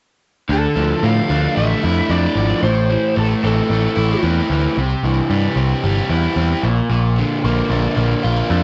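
Moody and restless, this short cut from a longer rock piece moves at 112 BPM in D minor, with a raw garage guitar riff and a growling picked bass, both overdriven and up front, driving through chords from Dmadd9 to Am, C and Bb. A lead guitar through a small cranked amp adds a gritty picked melody from 0.5 to 4.2 seconds before dropping away, while the riff and bass carry on to 8.6 seconds. Light reverb and the dusty, muffled character of a home cassette recording give it a lo-fi, homemade feel.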